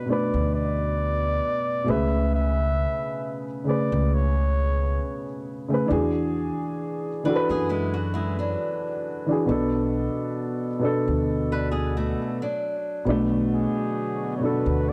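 Lo-fi hip hop with a nostalgic, melancholic mood, cut from a longer piece: a dark, boxy upright piano carries the chords up front through a cassette-tape haze while a woody, growly pizzicato upright bass sits beneath, a veiled, bucket-muted trumpet sings a smooth jazz solo with light vibrato and tape echo, a fingerpicked flamenco guitar with fresh strings adds a second line from 7.2 seconds, and after a brief stop a soft, detuned sawtooth pad with chorus drifts in the background from 13.1 seconds, the recording itself dry and gritty with light reverb.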